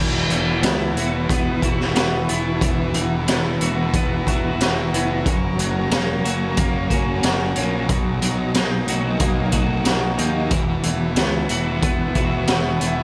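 This hazy, wistful shoegaze and dream pop rock excerpt opens with a lush, detuned pad holding sustained chords through a warbling chorus, while a bright, twangy twelve-string electric guitar picks clean, compressed arpeggios bathed in ensemble chorus and slapback echo. Beneath them, a biting overdriven guitar plays a riff colored by reverse reverb, and a thick fuzz guitar adds weight with its own distorted riff and a subtle chorus, both sitting in the background of the mix. A dark, round fuzz bass drives the low end with punchy, overdriven picking. At 0.3 seconds a raw garage drum kit arrives up front, its high-tuned snare, punchy kick and hi-hat sounding saturated and gritty with a rolled-off top, as if played in a small room. The chords move from Esus2 to F# and Bmaj7 before returning to Esus2, all under a light reverb that keeps the dense layers dreamy and blurred.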